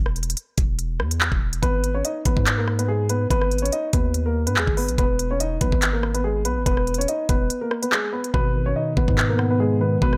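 A knocking kick, crisp hats, handclaps and rim clicks from an up-front electronic drill kit drive this tense, ominous half-time piece at 143 BPM in G# minor, over a deep, long-decaying sine 808 bass, with a dark, filtered baby grand piano melody entering at 1.6 seconds over G#m and E chords and a clean, mellow tine electric piano joining at 8.3 seconds as the hi-hats drop out, all set in a light digital ambience.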